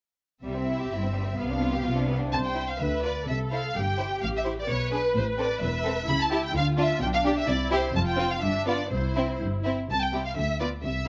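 Graceful and lively, this quick classical-period movement for string orchestra moves at 128 BPM in 2/4 with a rubato feel in C major, tuned to A4 = 437 Hz, and is cut from a longer piece. An up-front, lush first violin section carries the expressive melody with vibrato, a clear, focused second violin section plays a second line, and violas add rich accompaniment with vibrato and portamento. Smooth, even double basses hold the bass from about 0.4 s, with cellos joining them at 0.5 s, all heard through close, detailed microphones in a moderate recital hall reverb.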